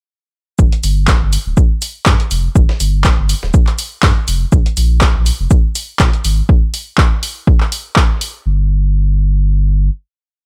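This short, driving acid house piece opens at 0.6 seconds with a four-on-the-floor electronic kick, up front and punchy with a tape-warm edge, alongside a deep, round sine sub bass playing a syncopated riff that pumps against the kick. An analog drum machine joins just after with handclaps and an open hi-hat, programmed as hats and a backbeat that sit forward in the mix. Beneath them, a gritty, compressed sampler-style kit plays a looped breakbeat with edits, its hi-hat, shaker and medium-tuned snare high-pass filtered and tucked into the background, with its hats and percussion also pumping. The swung sixteenths and dry, close sound keep the hypnotic groove tight until the sampled kit drops out at 6.4 seconds, and the kick and then the drum machine follow shortly after. The sustained sub bass carries on alone into a final note.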